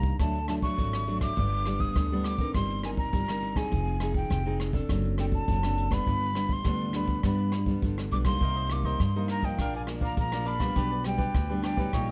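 A breathy, soft-attacked jazz flute carries the melody over an up-front, full-bodied fingerpicked nylon-string guitar (finger squeaks audible), woody pizzicato upright bass and a studio brush kit with punchy kick, hi-hat and rim clicks in this lively, nostalgic samba and choro passage at 102 BPM, cut from a longer piece, with a crisp picked cavaquinho entering low in the mix at 8.4 seconds, all set in a dark, warm production with light reverb.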